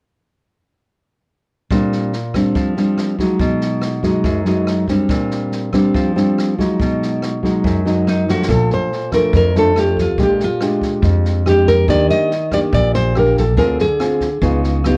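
Dry and close, this excerpt carries the worn, warbly pitch drift of old cassette tape over a romantic, sunny bossa nova at 142 BPM in Bb major. A full-bodied, fingerpicked nylon-string guitar sits up front, its chords moving between Bb6/9 and B6, over an open jazz kit in a small room with rim clicks, a natural snare and a boomy kick. A drum fill at 8.3 seconds marks the turn to the second section, where a thumb-plucked nylon-string melody (from 8.1 seconds) and a woody, growly pizzicato upright bass (from 8.5 seconds) join, as the harmony moves through Bbmaj7, Ebmaj7 and Dm7b5 to Db9.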